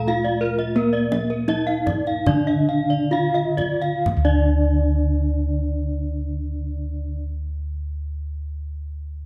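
An up-front bronze metallophone struck with a wooden mallet rings out the melody in this brilliant, shimmering Balinese gamelan excerpt in D pelog, its paired tuning giving a pulsing glow, while a soft, airy metallophone with padded disc mallets sits in the background on accompaniment, two horn-mallet metallophones (one dark and smooth, the other boxy) play high arpeggios, round, mellow bossed gongs carry the bass, and a deep kendang drums from 0.3 to 4.5 s, the straight 4/4 pulse slowing over the first 4.1 s within a tempo of 61-93 BPM in a moderate recital-hall reverb.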